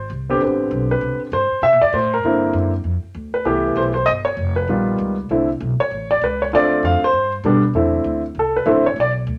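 Swinging and warm, this brief jazz piano trio fragment in 4/4 pairs an intimate, up-front grand piano, its action noise audible, carrying the melody over extended harmonies such as Am11, Fmaj9#11 and G7alt, with a woody, growly pizzicato upright bass on steel strings, all in moderate studio reverb, as the piano moves into a solo at 7.7 seconds and drops out at 9.1 while the bass runs on to 9.4 seconds.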